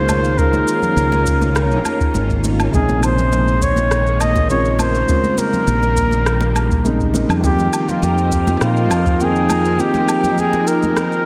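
A relaxed 102 BPM groove in straight 4/4 rolls under this sunny sunset chillout excerpt, built on a deep, analog-flavored electronic kick, produced electronic woodblock, shaker and rim click in a small room, and very quiet, high-tuned congas struck with hard hands and heard close. Up front, a fingered electric bass with tube saturation sounds warm and direct, holding the low end from Ab1 to Bb2 until it stops at 9.8 s, while the kick drops out at 9.2 s. A breathy, whispered flugelhorn carries the melody between F4 and Eb5 in an intimate jazz style, its soft attack and vibrato colored by tape echo. Behind it, a dark, boxy concert grand piano with the same tape echo supplies accompaniment, and a silky, vintage string machine holds sustained chords with a slow attack, long release and a warbling ensemble chorus. The harmony moves from Db69 to Bbm11 at 2.7 s and settles on F7sus4, all bathed in a moderate plate reverb that gives the mix a dreamy, reverb-soaked glow.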